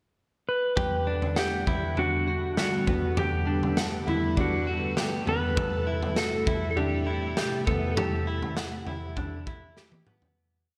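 Floating and dreamy, this short 100 BPM dream pop piece in G major opens at 0.5 seconds with a dark, slide-played lap steel tracing call-like motifs through digital delay, joined at 0.8 seconds by a lush sawtooth string-machine pad with ensemble chorus, a bright, compressed, direct-recorded electric guitar picking a chorused and delayed arpeggio ostinato, and a gritty, saturated garage drum kit whose slow tom and kick pulse is washed in gated reverb, all set in a lush hall with a bright 1980s digital sheen before the fade-out closes on a drum fill at 9.8 seconds.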